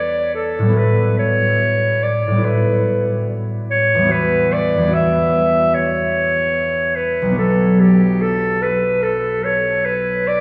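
A clear, distant clarinet carries the melody up front in this hazy, mysterious impressionist duo, its roomy classical tone floating over a warm, ringing concert harp that is fingerpicked in accompaniment. Set in E dorian at a rubato 73 BPM in 4/4, the music rests on an Emadd9 colour before shifting to Bm at 7.4 seconds. A wet cathedral reverb with a 5.3-second decay places this short cut from a longer piece in a vast, echoing space.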